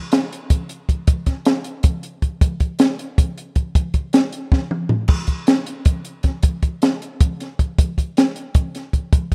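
Restless and intricate, this short rock excerpt moves in a brisk 7/8 at 313 BPM counted in eighths, played straight by a compact cocktail drum kit. The acoustic kit sounds dark and smooth in a small room, with a punchy kick, a high-tuned snare, hi-hat, toms and crash cymbal sitting up front. A drum fill from 4.5 to 5.1 seconds breaks the pattern in this dry, rough home-demo mix.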